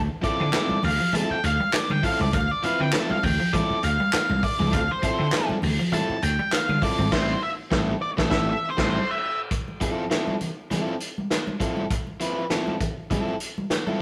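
A rough rehearsal-room recording with a moderate stone-room reverb frames this sly, hypnotic funk cut from a longer piece, moving at 100 BPM in 4/4 with a swung sixteenth feel in D minor. An up-front octave-fuzz lead guitar, dark and distorted, carries a picked solo in a high register from the opening moments until about 9.4 seconds. A growly, amped vintage slap bass and a very quiet, twangy electric guitar at the edge of break-up playing a picked riff sit beneath it, the riff dropping out at 7.1 seconds when the band hits an accent as the harmony moves from Dm9 to Am7. A compressed, overdriven electric guitar holds the accompaniment up front throughout, while a mid-forward vintage drum kit with dark cymbals, a punchy kick, a medium-tuned snare, hi-hat, crash and handclaps drives the groove. Soft-handed, thick-skinned congas, damped and saturated, murmur in the background, and after the bass stops at 9.0 seconds the closing stretch settles onto Fmaj7 with drums, congas and rhythm guitar.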